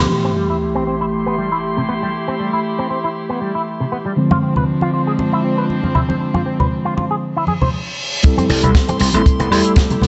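A mellow tine electric piano, a dark, reedy chamber string section and a clean, filtered electric guitar riff open this groovy, feel-good nu-disco cut at 118 BPM in C major, with the piano and strings pumping against an unseen pulse while an electronic sub drop hits at 0.1 seconds and filter sweeps run over the guitar and strings. Bright, close congas join at 4.3 seconds, and a reverse cymbal leads into the drop at 8.2 seconds. There a dry, punchy kick and a tight funk kit with a high-tuned snare, hi-hat and woodblock arrive, and a growly, overdriven slap bass returns up front at 8.5 seconds, all in a lush hall with a smooth, rolled-off top.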